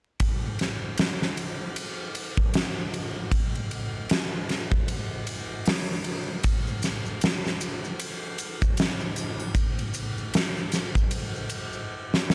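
Trip hop at 77 BPM with a 60% swing on the 16ths, this brooding, hypnotic excerpt is built on a huge, up-front acoustic arena drum kit of punchy kick, fat snare, bright hi-hat and ride cymbals, joined in the background from 6.4 to 11.9 seconds by compressed, saturated maracas, triangle and group handclaps, all under light studio reverb and vinyl crackle before a drum fill at 12.1 seconds.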